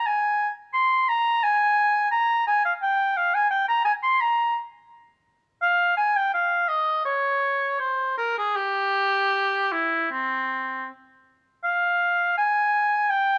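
A lone, warm oboe with light vibrato opens this introspective, solemn baroque-style fantasia, moving freely in rubato across a range from C4 to C6 before shifting into a new passage at 11.7 seconds, captured by close, detailed microphones with light reverb in a brief fragment of a longer classical piece.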